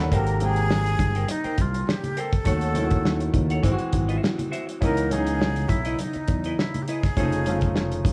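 This excerpt of lush, smooth 1970s-style soul opens on a clear, natural grand piano, a clean, picked hollow-body electric guitar riff and a fingered electric bass, with the rest of the band joining at 0.1 seconds. The tempo sits at 102 BPM in 4/4 with a light swing on the sixteenths. A breathy metal jazz flute carries the melody with vibrato, a soft attack, lifted highs, an expressive delivery and tape echo. Underneath, a damped 70s drum kit sits up front with a fat snare, tight kick, hi-hat and a dry, rolled-off top, while the bass is bright, growly and punchy, and very quiet congas add a thin-skinned, band-limited vintage tone played with hard hands. The harmony moves from Abmaj9 through Ebm7b5, Abaug7 and Dbm9 to an F7alt at 7.2 seconds, all inside a light, small-room reverb.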